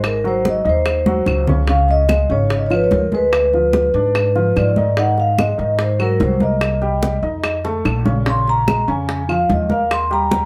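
Lively and sophisticated, this Afro-Cuban jazz excerpt in Ab mixolydian moves at 146 BPM in a straight 4/4, with an up-front vibraphone played with soft mallets carrying a mellow, ringing melody through plate reverb over a slightly detuned, vintage upright piano, a growly, thumpy pizzicato upright bass, close and dry bright congas and tight high-tuned bongos, and compressed, saturated woody claves, all set back in a moderate club room, with fills at 1.1 and 7.6 seconds.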